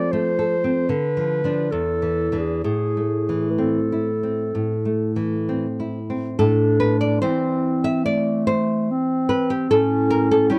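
A woody, fingerpicked nylon-string guitar with old strings sits up front beneath a mellow clarinet melody in this elegiac, solemn romantic duo in A minor, tuned to A4 = 437 Hz, moving in a rubato 4/4 at 62-78 BPM through F, Bdim/D and Eadd11 to Am before an A7 at 9.7 seconds, all captured in a dry, close 1970s-style studio sound in a brief fragment cut from a longer piece.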